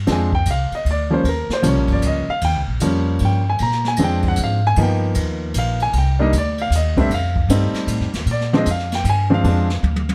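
A swung jazz waltz in three moves at a relaxed, playful lope, with the woody, growly pizzicato upright bass sitting up front beside a warm baby grand piano that carries a solo through a progression of mostly dominant chords over the whole 10.1-second excerpt. A brush kit sits farther back in a roomy studio space, its dark cymbals and boomy kick setting off the close, natural piano, and it closes with a drum fill at 9.8 seconds, all bathed in light reverb.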